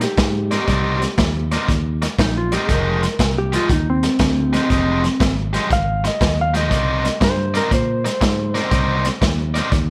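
A dark, clean lap steel guitar carries a soulful, mournful slide melody through this short electric blues shuffle excerpt, set over a bright overdriven electric guitar riff, fingered electric bass and a gritty, saturated breakbeat drum kit with a tight kick, all moving from Cm9 to Fm9 at 2.7 seconds and back to Cm9 at 6.7 seconds in light reverb.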